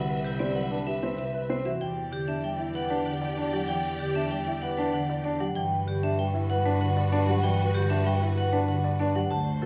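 A straight 6/4 pulse at 192 BPM drives this hypnotic, propulsive minimalist classical pattern music in G major, cut from a longer piece. A metallic, ringing vibraphone struck with hard mallets carries the melody between G4 and A5, its dark, smooth tone shimmering with motor vibrato. Beneath it, a woody marimba on padauk bars, played with medium mallets, supplies low accompaniment, while a single focused cello anchors the bass with bowed vibrato and a smooth top. A lush symphonic violin section holds sustained chords with soft attacks and expressive vibrato. An intimate baby grand piano joins at 0.4 s with arpeggios, its long sustain and audible action noise giving a natural closeness. The harmony moves from Cmaj9 to Em7 and settles on Gmaj7 at 5.6 s, all set in a wet recital hall reverb with a 1.4 s decay.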